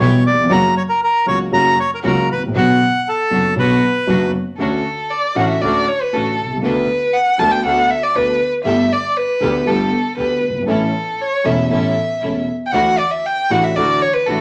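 Dramatic and passionate, this rubato tango excerpt at 118 BPM in 4/4 opens in B minor with a reedy, up-front bandoneon carrying the melody until 4.3 s over a dark, boxy concert grand piano with audible action noise, focused bowed string stabs and a distant, bowed double bass in the background, before shifting to D major at 4.6 s, where a bowed violin takes a solo second line with vibrato, soft attacks and expressive portamento, all set in a wet studio reverb.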